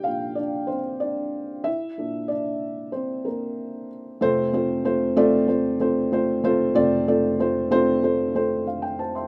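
A felt-muted upright piano carries this short pop excerpt alone, its thick felt giving a soft, dark, boxy tone that sits close and up front in the mix. The mood reaches for something anthemic and uplifting, even as the muted timbre keeps it intimate. Moving in a straight 4/4 pulse, the piano spans from deep bass notes up into its upper register, opening on a Bb chord that blooms into Bbadd9 at 1.7 seconds before settling onto F at 4.2 seconds, where a new section begins. Light reverb adds a touch of space around the mellow sound. The rough home demo mix lends the recording an unpolished feel, and the passage reads as a fragment cut from a longer piece.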